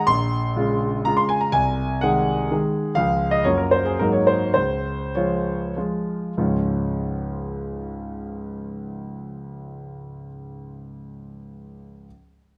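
Graceful and rustic, this short cut from a longer classical piece is a romantic triple-time dance for solo concert grand piano, its dotted rhythms shaped with free rubato and a gradual slowing between 2.3 and 6.4 seconds. The piano sounds clear and open, with a deep bass and an up-front presence, set in a moderate recital hall reverb. A new section begins at 6.4 seconds after a cadence that settles home on the tonic chord.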